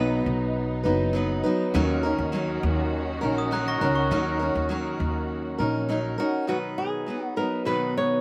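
A picked steel-string acoustic guitar sits up front for the whole of this carefree acoustic pop excerpt, its warm, auditorium-toned picking moving easily from B to D#m7 over a woody, thumpy pizzicato upright bass and a smooth, bowed studio string section with expressive vibrato. A dark, bell-like glockenspiel struck with brass mallets rings out a brief second line from 3.4 to 4.8 seconds. Around 5.9 seconds, a fingerpicked flamenco guitar steps forward with the melody as the bass and strings drop away, all in a dry outdoor sound with little reverb.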